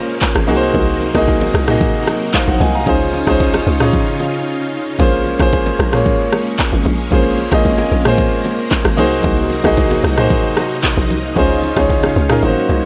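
A straight 4/4 amapiano groove at 113 BPM drives this soulful, hypnotic excerpt cut from a longer piece. An electronic, produced afro-pop drum kit sits up front with a deep kick, handclaps, rim click, shaker and toms, while bright, close and dry bongos and congas, struck with hard hands, tick along in the background. Underneath, a hollow, bouncy log drum bass with a fast attack and mellow decay rolls between Ab1 and Db2. A clear concert grand piano, smooth and vintage with deep bass, carries the accompaniment up front through chords of Ab9/C, Dbmaj9 and Bbm7. Shimmering sawtooth string-machine violins with ensemble chorus hold soft-attack sustained chords beneath it all in light reverb and digital ambience. The groove pauses for a brief break at 4.5 seconds, and the kick drops out from 12.4 seconds to the end.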